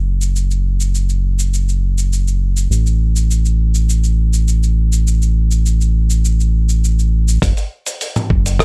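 Sunset chillout at 102 BPM in F# minor, smooth and warm, built on a round, deep analog bass sitting up front and low, joined at 0.2 seconds by a dusty soul sampler-style kit of cabasa, hi-hat, rim click and toms with a gritty, compressed small-room character, before a thumpy electronic kick arrives at 7.4 seconds as this short excerpt cut from a longer piece shifts into its next section with little reverb throughout.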